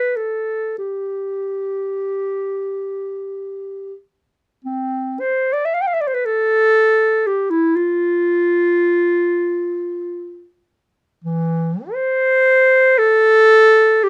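A lone clarinet opens this short classical passage, its mellow tone set up front in a light reverb. The piece is free and expressive, moving in a slow, rubato 6/8 with the pulse hovering between 25 and 41 dotted-quarter beats per minute. The mood is lyrical and nostalgic, and the unaccompanied line spans a range from E3 to G5. A brief opening phrase gives way at 4.6 seconds to a return of the same material, which carries on until the passage ends at 14.1 seconds. Cut from a longer work, it offers a brief glimpse of a single voice singing on its own.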